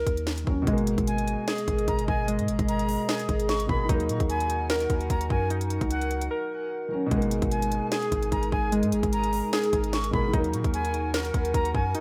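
A half-time trap groove at 149 BPM drives this melancholic, hard-hitting hip hop cut in G# minor, with an up-front electronic kit of hard-clipped kick, sharp snare and crisp hats entering at 0.1 s, while a deep, boomy 808-style bass with a sine body and noise layer anchors the low end. From the start, warbly lo-fi synth keys spin nostalgic arpeggios through chorus, a low-pass filter and tape echo, over a dark, worn grand piano whose boxy, intimate tone carries audible action noise beneath its filtered accompaniment. At 1.1 s a detuned, wave-folded pad arrives with slow-attack sustained chords and a long release, alongside a breathy, bright jazz flute whose reedy chiff and vibrato trace a second line high above, trailed by tape echo. The harmony moves between D#m and G#madd9, with a brief break around 6.3 s. Light reverb frames the mix, and the piece is cut from a longer track.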